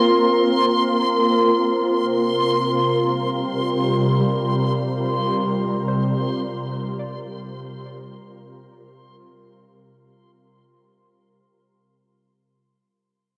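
A glassy FM pad sits up front, holding mellow, ethereal sustained chords from C7 with its third omitted to Gm7 over C, thickened by ensemble chorus and its own reverb. This ambient fragment, cut from a longer piece, moves in free time with a melancholic, serene mood, and fades out across its full 11.0 seconds. A reversed, swelling texture hovers high on C6, bright and dreamy with a granular, detuned shimmer and a long release. Beneath them a soft, round pluck plays very quiet, dark arpeggios with detuned, wave-folded tones, lingering until 12.3 seconds, past the point where the other parts end at 11.0 seconds. The whole recording sits in a lush hall reverb and carries the worn, warbling pitch drift of old cassette tape.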